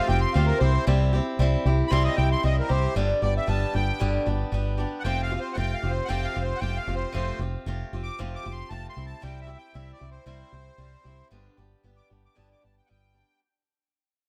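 Folk rock and heartland rock with a jangly, warm mood, this fading clip from a longer piece features a reedy, sweet accordion solo with light tremolo tuning and slapback echo carrying the melody over a boxy, picked swing-style acoustic guitar and a foam-muted, up-front fingered electric bass, set in light reverb as the chords move between Fadd9, C and G.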